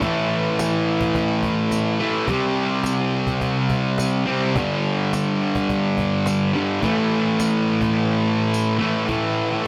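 A straight 4/4 pulse at 106 BPM drives this rowdy, raw garage rock excerpt, where a thick, bright, double-tracked electric fuzz guitar riff sits up front, moving through A5, C5 and G5 chords, while a snappy, close acoustic cajon and a jingly, vintage tambourine entering at 0.6 seconds sit in the background of a moderate studio reverb until the kick and snare drop out at 8.0 seconds.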